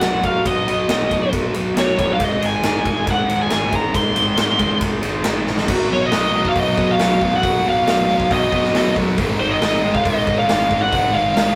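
A straight 4/4 pulse at 138 BPM drives this restless, cathartic slice of quiet-loud alternative rock, with a big, up-front acoustic drum kit of punchy kick, medium-tuned snare, hi-hat, ride and bright crash cymbals, and a drum fill at 5.5 seconds. A high-gain, distorted lead guitar sings the melody up front over riffs from a bright, thick fuzz guitar and a very quiet crunchy overdriven guitar, while a fuzz-toned picked electric bass sits in the background. At 5.7 seconds a dark, double-tracked sludgy guitar joins the riff from behind the mix, all captured as a rough rehearsal-room recording in a moderate stone room reverb.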